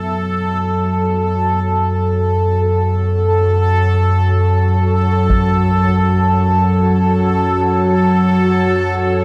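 Soaked in a cavernous cathedral reverb, this short section of a longer dark ambient drone in F# minor drifts in free time with an ominous, dreamy weight. Up front, a chorused analog drone of sawtooth and pulse-wave tones evolves under a filter sweep, while a bubbling, resonant texture steps through random filter changes around A4. A blurred, mellow granular cloud pad fades in behind them, and at 5.3 seconds a very quiet taiko ensemble lands a brief, close and dry hit of heavy sticks.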